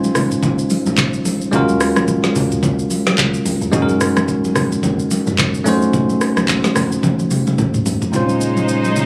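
A swung 4/4 groove at 109 BPM drives this hypnotic, deep amapiano excerpt in Bb minor, tuned slightly low to A4 = 438 Hz. The electronic afro-pop kit sits up front with a knocking kick, woody snare, crisp hats, rim clicks, handclaps, shaker and toms, all carrying a tape-tinged character. Bright, damped acoustic congas with a vintage, band-limited tone join it, while a round, dark FM log drum bass with a noise layer sits in the background. A bell-like, clean tine electric piano plays the chords up front, moving through Bbm11, Ebm11, Gb6 and F7b9b13 before returning to Bbm11. A drum fill arrives at 7.0 seconds, and at 8.1 seconds the log drum bass stops and an intimate bowed string section enters with soft, sul tasto chords, vibrato and sidechain pumping. The whole piece sounds as if captured on a phone in the room, with club reverb and compression.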